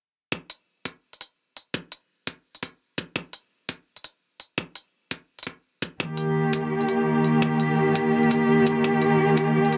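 A swung half-time groove of knocking electronic kick from 0.3 seconds and crisp, layered electronic hi-hats from 0.5 seconds, both up front with a small-room character, opens this dark, cinematic drum and bass excerpt before a woody, lush symphonic cello section enters at 6.0 seconds on an Eb chord, its bowed, soft-attack sustained chords carrying vibrato and sidechain pumping within a light digital reverb.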